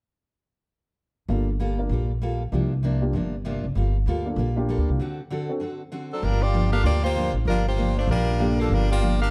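A bright, tight saxophone section carries the melody from 6.1 seconds, playing up front with jazz-style vibrato in this short cut from a longer big band swing piece. The mood is swinging and dramatic, at 194 BPM in 4/4 with swung eighths, in G minor. Beneath it, a woody pizzicato upright bass sits up front from 1.3 seconds. A picked, full-bodied dreadnought acoustic guitar and a warm concert grand piano with deep bass provide accompaniment lower in the mix. The harmony moves from Gm9 through C9sus4 and D7, with a break at 5.0 seconds before the second section opens on Gm7. Light reverb and close, detailed microphones keep the sound present and clear.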